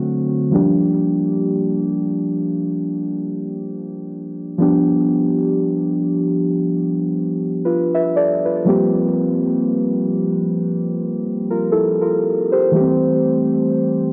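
Moody and longing, this slow R&B fragment at 59 BPM in G dorian drifts with a gently swung sixteenth-note feel, slightly flat of standard pitch. A lone muted, felt-like synth keys part carries everything from 0.0 to 14.1 seconds, its dark, intimate tone blending triangle and sawtooth with a soft noise layer, quick to strike and then decaying, coloured by chorus, analog delay and cassette tape character. Sitting up front in a lightly reverberant home cassette recording, it moves through D7, Gm7, G7, C7sus4 and Am7 before the cut.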